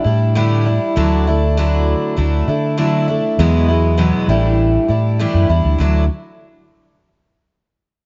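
A picked twelve-string acoustic guitar sits up front, bright and shimmering with fresh strings and octave-doubled ringing, in this short folk rock and heartland rock excerpt with an open-road mood. A fingered electric bass joins at 0.1 seconds with an amped, growly tone beneath chords moving from A7sus4 through Dadd9 and Eadd9 before landing on D at 5.8 seconds. Light reverb and a dark, warm production frame the straight 4/4 feel.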